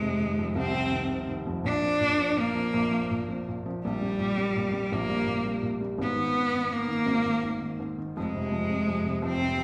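A bowed cello with focused, vibrato-rich tone carries the melody from the very start, close and up front over a felt-muted upright piano whose soft, intimate accompaniment lets the hammer action's noises show through. This romantic, swaying pop fragment in 6/8 moves from Fm7 through Bb, Gm/Bb and Abm before settling on Fm at 8.2 seconds. Both instruments play together in one large studio room whose generous reverb surrounds them.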